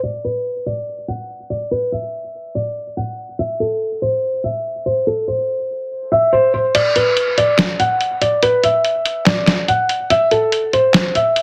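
Dark and brooding, this half-time trap excerpt opens on a felt-muted upright piano carrying the melody alone, its soft, intimate tone up front with audible action noise, shaded by a low-pass filter and delay while a filter sweep runs through the first 6.7 seconds. At 6.7 seconds a lo-fi sampler-style drum kit arrives with crash cymbal, handclaps, hi-hat and a medium-tuned snare, sounding compressed and muffled as if re-recorded in a small room, while the kick stays muted. Light reverb and digital ambience surround a dense, heavily limited master.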